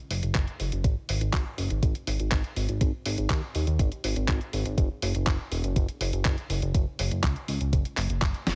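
A chorused synth bass and a clean 12-bit digital drum machine start together at 0.1 s in this short italo disco excerpt, cut from a longer piece. It moves at 122 BPM in a straight 4/4 and carries a bittersweet, nostalgic mood, tuned to A4 = 439 Hz. The bass sits up front with a retro, glossy tone that blends pulse and sawtooth waves, with pulse-width modulation and a moving notch keeping it evolving. Its fast attack and sustained, mellow notes range from E1 to D#2. The drum machine supplies handclaps, hi-hat and a fat, up-front snare in a sampler-style sound, joined at 0.4 s by a thumpy electronic kick, both drum parts carrying a touch of studio reverb. The overall mix is fairly dry and heavily compressed, giving it a dense, radio-ready punch.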